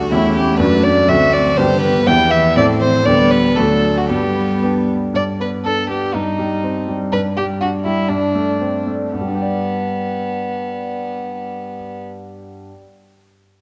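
A quick, lively classical-period movement for piano quintet in G major and 2/4, running at about 111-126 BPM with a rubato feel and tuned slightly low. A pure, floating solo violin carries the melody up front over a brilliant, vintage-toned grand piano with long sustain. Until 4.9 s, a close, intimate second violin joins a dark viola and cello sitting in the background, all three playing soft, airy sul tasto lines. After that the piano and lead violin continue as a pair, slowing down from 6.6 to 9.1 s, all set in a wet concert-hall reverb in this cheerful fragment cut from a longer piece.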